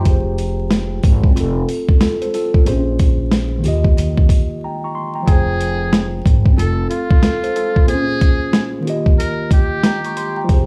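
A gritty, compressed sampler-style drum kit with a thumpy kick and high-tuned snare drives this tough, reflective boom-bap hip-hop piece at a swung 92 BPM in F minor. A woody, growly pizzicato upright bass sits up front beside it, a worn, slightly out-of-tune mellow tine electric piano carries the Fmadd9 to Bbm7 changes, and faint jingly sleigh bells sit in the background. After a short break at 4.6 seconds, a buzzy, breathy metal-muted trumpet solo with scooped notes, light vibrato and slapback echo enters over the band at 5.3 seconds, all under vinyl crackle and studio reverb.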